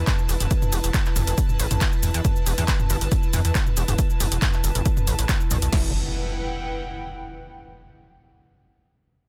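A gritty, saturated synth bass drives this short, dark and intense cut of peak-time techno at 138 BPM in E minor, its aggressive sawtooth tone pumping against the kick from the start until 5.9 seconds. A punchy analog drum machine sits up front with kick, snare and crash cymbal, together with handclaps, hi-hat, shaker and toms, all in a straight 4/4 drive. Behind them, an airy, breathy pad with chorus and a warbling vintage character breathes with the same sidechain pumping and holds on until 7.4 seconds. At 5.7 seconds the groove gives way as a very quiet, round analog pluck sounds a single E4 and an electronic impact hits up front, ringing out to the end. The sound is dry and dense, with a heavily limited modern master.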